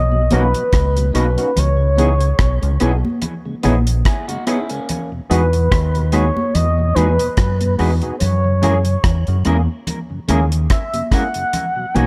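A small, intimate room surrounds this tender, smooth lovers rock reggae clip at 72 BPM in B major, with a swung sixteenth feel. An up-front, reedy FM lead carries the melody with chorus, tremolo, vibrato, portamento and tape echo, over a dark, round fingered dub bass and a dry, tight reggae kit of kick, hi-hat and rim click. Around them sit a barky, lightly overdriven tine electric piano, clean guitar stabs with tape echo, a very quiet tonewheel organ with key click and slow rotary speaker, soft-handed high-tuned congas in the background, and a brief, slightly broken-up lo-fi guitar arpeggio from 4.1 to 5.1 seconds, over chords moving from Bmaj7 through C#m7, Emaj9 and F#9.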